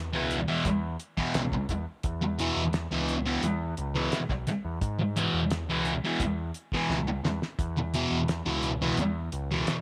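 A growling, overdriven bass opens this short psychedelic rock cut, round and up front, and is joined almost at once by a thick, double-tracked fuzz guitar riff, bright and distorted with a phaser coloring its picked tone. A cloth-damped acoustic kit thuds underneath with a fat snare, tight kick and hi-hat, its rolled-off top keeping it dry and dark, and it breaks into a fill at 6.9 seconds. The hazy, kaleidoscopic mood sits in a close, nearly reverb-free sound on a steady straight four.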